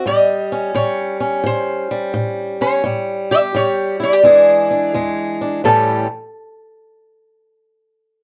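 A dark production with light reverb frames this short cut from a longer acoustic country blues piece, which carries a swaggering, soulful mood. It moves at 86 BPM in 4/4 with a swung eighth-note feel in A mixolydian. A lap resonator guitar, played with slide and fingerpicks, carries the melody between A4 and E5 with a metallic, nasal voice that still sounds mellow. Beneath it, an up-front fingerpicked acoustic guitar with fresh strings supplies swing-style accompaniment from E2 to G#4, its tone bright yet boxy. Both guitars play together from the start until 6.1 seconds, over a harmony that sits on A7, moves to E7 at 4.2 seconds and returns to A7 at 5.6 seconds as a new section begins.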